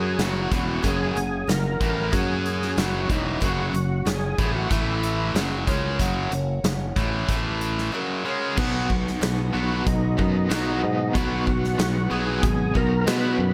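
Confident and driving, this classic rock passage at 93 BPM in 4/4 pairs a bright, up-front distorted electric guitar riff with a growly fretless bass, a shimmering twelve-string acoustic in the background and a big-room arena drum kit with a punchy kick and crash cymbal, while a gritty, overdriven tonewheel organ with slow rotary speaker carries the melody until 5.3 seconds, a raw garage guitar with tremolo joins in the background at 8.6 seconds as the harmony moves from F# to B, and the organ returns at 9.5 seconds, all under light studio reverb.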